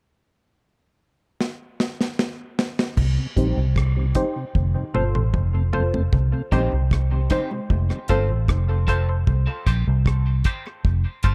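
In this spacious, meditative dub reggae excerpt in C dorian at 76 BPM, a dry, dark reggae drum kit opens with a fill at 1.4 s, then at 3.0 s a round, punchy, foam-muted bass arrives up front alongside very quiet, ringing congas, soon joined by a background tonewheel organ with slow rotary vibrato and key click, a slightly broken-up, picked electric guitar, and a deep sawtooth chord stab with chorus and tape echo, as filter sweeps move through an echo-heavy mix that shifts between Cm and F.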